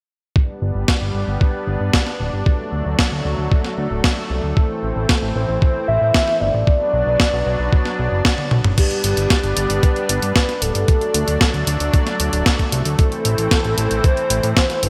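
Italo disco with a sunny, romantic mood at 114 BPM in G major, where a gritty, thumpy kick and a tape-tinged 12-bit drum machine with crash, hi-hat, medium-tuned snare and toms sit up front beside a fat, detuned, saturated analog bass, under an airy, chorused unison pad holding sustained chords over a G, D, Am, Bm progression, a drum fill at 8.4 seconds, and a round, dark, octave-layered synth lead with tremolo, vibrato and delay entering at 4.6 seconds, all set in a lush hall reverb with bright 1980s-style digital production in this excerpt from a longer piece.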